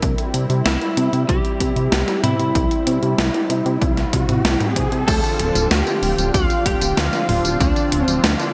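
A straight 4/4 groove from an overdriven, punchy electronic kick and an up-front, sampler-style drum machine with gated reverb on its snare, hi-hat, tambourine, toms and crash powers this driving, nostalgic synthwave excerpt, over a glossy pulse-and-sawtooth synth bass with a filter pluck and a smooth, detuned pad that pumps with sidechain and glows in shimmer reverb. A dark, slightly broken-up lead guitar carries the melody from 0.7 seconds with digital delay, an electronic riser sits in the background from 2.7 seconds, and at 5.1 seconds, as the chords move from C to Dm7, an airy, dreamy sine-based lead with vibrato and portamento adds a soft second line in the background. The bright 1980s-style digital production sits in a moderate, lush hall reverb.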